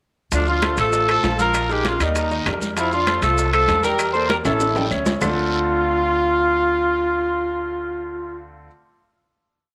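The recording has a close, lively sound, set in a small room with a moderate spring reverb, for this short, fiery and passionate salsa in D minor at 196 BPM. Up front, a pop-style horn section carries a motif-based melody of hook phrases, partly doubled in thirds, with a smooth top and light vibrato. A bright concert grand piano plays a brilliant, polished montuno in octaves with a deep bass, while a thumpy, dark upright bass on gut strings plays a pizzicato tumbao that anticipates the chords. The percussion is a full bed: ringing congas with slaps and open strokes, metal-shell timbales with a shell pattern and bell, a raspy guiro, grainy maracas, dry claves on a two-bar time line, and very quiet, round bongos in steady eighths with a hand bell, heard at a distance. A drum fill arrives at 4.3 s, and the percussion stops at 5.3 s. Horns, piano and bass then sound the final Dm7 chord, with the horns dropping out just before piano and bass finish.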